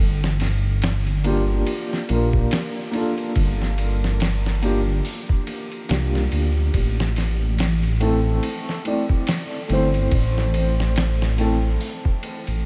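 A dark, detuned saw bass opens this short trip hop excerpt, its deep, rumbling tone saturated and beating as it sustains in its low register. A moment later a dusty, sampler-style soul drum kit enters with hi-hat, ride, a thumpy kick and a medium-tuned snare, sounding gritty, compressed and tape-tinged within a small room ambience, while the groove carries a lazy sixteenth-note swing. At 1.2 seconds a felt-muted upright piano joins as accompaniment, soft and intimate, its mellow voice trembling under tremolo and trailing tape echo. The harmony rests on Gm7 before moving to Am at 6.7 seconds, deepening the dark, smoky mood. A huge ambient reverb soaks the whole mix into a dreamy haze, though bass, drums and piano all sit up front.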